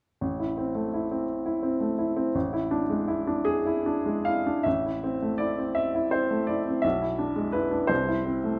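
A clear, woody upright piano opens at 0.2 seconds, carrying this stormy, passionate romantic character piece alone from its first note to its last at 8.6 seconds. The music sits in A minor and moves in a slow, flexible 6/8, the pulse of roughly 48 to 58 beats per minute stretching and yielding under rubato. The harmony rests on A minor and E7, first over an A in the bass and later over B, before settling onto A minor with C beneath it. A second section begins at 4.7 seconds, and the piano ranges from deep in the bass up into its upper middle register. The instrument sounds smooth and vintage, with a short sustain, and it sits up front in a wet recital hall whose reverb lingers for about 1.4 seconds. It is a brief fragment cut from a longer piece, tuned slightly below standard pitch at A4 = 439 Hz.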